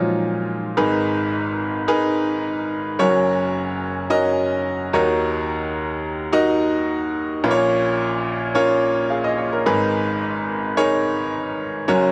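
A lightly reverberant room frames a single upright piano, placed up front with a brilliant, woody tone and long sustain, in this 12-second fragment of a longer pop piece. Playing alone from the start across a broad range, the piano carries a driving, dramatic mood in a straight 4/4, moving through Bbm, Abmadd9, Gb and Ebm7 before circling back to Bbm and Abmadd9.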